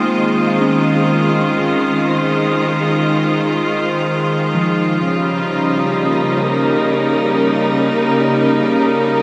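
A clear, biting string section sits up front, holding sustained chords that move from Dbmaj9 to Eb7 at 5.1 seconds in this reflective, spacious ambient piece in free time, tuned to A4 = 438 Hz. Behind it, a mellow, clean electric guitar plays fingered arpeggios through spring reverb and a diffuse ambient delay, fading out across the whole 9.2 seconds. A breathy, wind-like tuned noise texture hovers high on Eb6 in the background, and a huge, wet reverb with an 8.2-second tail surrounds the section in this fragment cut from a longer piece.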